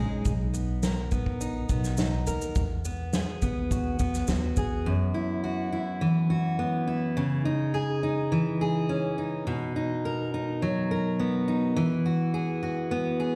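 Heard live through a venue's sound system with a touch of recital hall reverb, this heartfelt, sunny acoustic pop excerpt centres on an up-front, bright jumbo steel-string guitar, fingerpicked with fresh strings and a full-bodied tone across its Bmaj7, Eadd9, F#7sus4 and C#madd9 chords. Underneath, a woody, thumpy pizzicato upright bass on gut strings and an unplugged kit played with bundle sticks, with its punchy kick, fat snare and shaker sounding from a small room, both drop out by 4.8 seconds. The guitar then carries on alone until the cut at 13.4 seconds.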